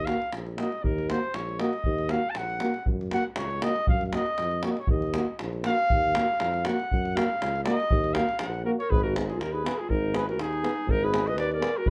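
Virtuosic and restless, this Balkan brass band excerpt in Eb minor moves at 119 BPM in a lightly swung 2/4. A vibrato-rich flugelhorn carries the melody up front, soloing from 0.0 to 8.9 seconds over a roomy tuba bass, a clear, soft-attacked euphonium, a punchy trombone set in the background and a deep davul. A dark, smooth clarinet joins with a second line at 8.7 seconds as the music turns to Abm, captured with close, detailed microphones in a small room.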